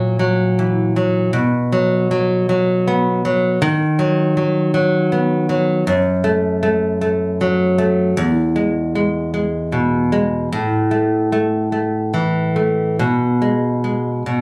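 A nylon-string guitar, woody and slightly dulled by old strings, plays this tender, nostalgic romantic piece alone in 6/8, fingerpicked in the classical manner and stretched with rubato, its lines sitting low between E2 and B3. The harmony drifts from a B major centre toward E major around 5.9 seconds, passing through F#m and E before settling on G#m/B. The guitar sits up front in a phone recording with a club-like reverb and compression, and the passage is cut from a longer work.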